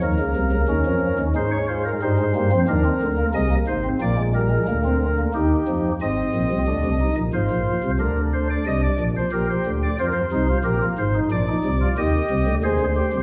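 A solo pipe organ on soft flute stops opens this solemn, driving baroque-style three-part fugue in Ab major with a high Eb5. At 90 BPM in 3/4, the organ sits up front with a chiffy attack, tremulant and period voicing, spanning deep pedal tones to the treble and ringing into a recital-hall reverb with a touch of small-room ambience. The harmony moves through Ab, Bb7 and Eb before a second section from 6.0 seconds turns through Fm7 and Bb to land on Eb at 12.0 seconds, and this short cut from a longer piece ends at 13.2 seconds.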